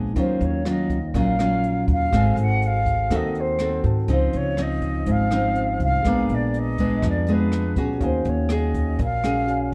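A straight bossa nova groove in 4/4 comes from a brushed jazz kit that enters at 0.2 seconds, its hi-hat, rim click and boomy kick set in a dark, smooth studio room with a rolled-off top. Beneath it, a woody pizzicato upright bass with steel strings holds the low end, while a full-bodied, fingerpicked classical nylon-string guitar sits up front in the accompaniment. A mellow tine electric piano adds clean, direct chords in the background, moving through Ebm9, Ab7b9, Dbmaj9 and Bb7b9 before settling on Ebm11. Over this, an airy concert flute carries the melody with vibrato and tongued notes, expressive and bathed in plate reverb, heard as both distant and up front. The production is dark and warm with light reverb, giving this intimate, smooth passage, cut from a longer piece, a relaxed late-night glow.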